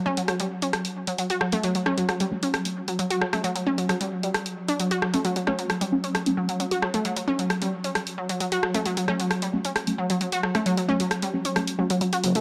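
A straight, driving 4/4 pulse at 133 BPM sets this intense, industrial stretch of peak-time techno in motion, with a punchy analog drum machine of hi-hat and rim click sitting up front from 0.2 s, its tone tape-warm. Over it, a bright unison pluck riff ranges from F#3 to F#4 in F# phrygian, its detuned sawtooth, wave-folded and ring-modulated sound colored by tube saturation, cassette tape and digital delay. Farther back, a muted, deep dub chord stab built on an F#m chord runs through phaser, analog chorus and digital delay, with a filter sweep across it from the start to 12.0 s. Beneath, a swarming, granular drone on F#3 evolves with a slow attack and its own mellow reverb, adding a tense haze. Only at 12.2 s does a growling, thick FM bass on F#1 slip in, high-pass filtered and kept in the background. The dark production, tuned to A4 = 435 Hz and placed in a lush hall reverb of 2.2 seconds, is a brief cut from a longer piece.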